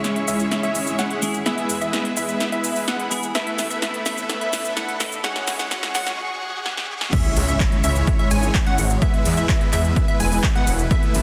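A powerful, anthemic festival progressive house build-up in C# minor at 127 BPM opens with a dense, compressed supersaw riff, catchy plucky unison lead arpeggios, a lush background pad and a bright, twangy clean electric guitar, all pumping against the sidechain, while a punchy, overdriven big-room drum kit with crisp hats and handclaps plays fills and a thick detuned saw bass joins at 0.3 s. Filter sweeps run over a C#m, E, Asus2, F#sus2 progression, a very quiet riser and impact start at 3.3 s, and the guitar drops out at 6.2 s. At 7.1 s the drop lands with an up-front, punchy electronic kick, driving the huge supersaw, bass and lead through a dense, heavily limited mix.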